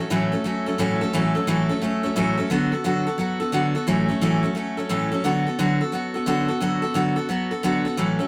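A picked steel-string acoustic guitar plays alone from the first moment. This brief rock excerpt, cut from a longer piece, is upbeat and rollicking, with a swung eighth-note feel at a brisk 175 BPM in 4/4. The dreadnought guitar sounds bright and full-bodied, its fresh strings ringing between A2 and A4, and a finger squeak adds a human touch as it sits up front. The harmony moves between A6 and D6, returning to A6 at 3.9 seconds before settling on D6 again. The recording has a rough rehearsal-room character with tube saturation and a wet studio ambience around the instrument.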